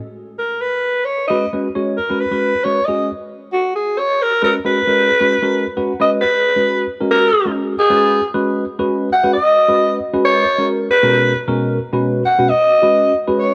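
A growling alto saxophone carries the melody in this funky, slick jazz passage cut from a longer piece, entering at 0.4 seconds with a raspy, vibrato-laden tone and a slapback echo. It sits up front yet has a distant, roomy quality. A clean tine electric piano joins at 1.3 seconds as accompaniment, played through a combo amp with a phaser, and slips in a short fill at 5.6 seconds before the second section begins. The music moves briskly at 268 BPM counted in eighths, in an odd 7/8 metre with a straight feel, in G# minor. The harmony starts on G#m11 and G#m9, then passes through G#m7, C#sus2 and B5 before settling back on G#m7. A moderate plate reverb gives both parts a shared space.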